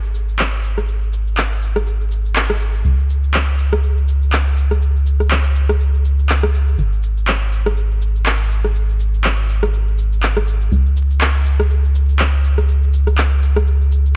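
Hypnotic and late-night, this deep house excerpt moves at 122 BPM with a 16th-note swing, built on a rubbery square-wave bass that bounces with a hollow, resonant pluck and wave-folded tone, moving between G#1 and C#2 up front in the mix. Overdriven electronic cabasa, handclaps and rim click sit up front alongside it, layered and produced, with both parts running together from the opening through about 14 seconds. The production is dark and dry, carrying little reverb and a bed of vinyl crackle.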